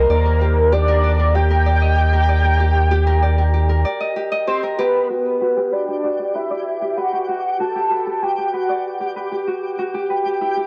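A warbling, nostalgic lead with ensemble chorus and tape echo opens this playful, wistful IDM excerpt at 96 BPM, joined from the start by a fingerpicked Celtic harp playing ringing arpeggios and a rubbery, bouncy square bass sitting up front on Eb2. The bass drops out at 3.8 seconds for a brief break, and the harmony moves from Ebmaj7 to Gmaj7 as the second section begins, bringing a filter sweep on the harp. A twinkling granular texture with an octave-up shimmer drifts in quietly at 6.0 seconds before the chords settle on Em7, all captured in a dry, gritty hardware recording with light reverb.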